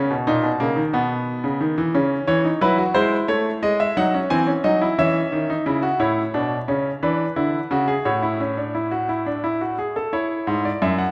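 In a 6/8 metre with a straight feel, the pulse moves at 59 beats per minute on the dotted quarter, giving this baroque-style three-part fugue a serious, contemplative gait. A solo baby grand piano carries every voice, ranging from F#2 up to G#5, with a bright, brilliant, polished tone whose short sustain keeps the counterpoint clear. Heard up front and intimate, the instrument lets its action noise come through, adding a close, present quality to the playing. The first part centres on C# minor, with a Badd9 and a G#7 leading back to C#m. At 6.0 s the music turns to A major, moving through E7 and A before closing on an E13 at 10.1 s. A moderate scoring-stage reverb lends the piano a sense of space, and the passage, cut from a longer piece, ends at 11.1 s.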